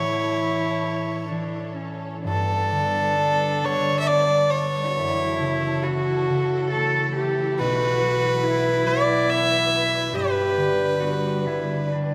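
An earthy, nasal solo fiddle carries the melody up front in this tender, wistful Celtic slow air, a fragment cut from a longer piece that moves in a rubato 3/4 at around 62-72 BPM, with a distant, reedy gut-string cello tracing a second line, a ringing, thumb-plucked concert harp close by in accompaniment, and a studio string section holding smooth-topped vibrato chords in the background, all bathed in a long church reverb of 3.6 seconds as the harmony drifts from A through Gadd9, F#m7 and Bsus4 to G.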